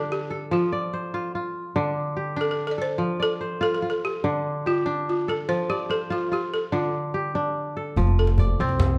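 A buzzing, dry balafon melody and a bright, ringing fingerpicked kora open this flowing, hypnotic West African piece in F major. At 96 BPM in a straight 12/8, they circle between D minor and F chords, set in the moderate reverb of a recital hall with a dark production. At 8.0 seconds a pizzicato upright bass with a woody tone and a deep djembe with metal rattles join for the brief closing section.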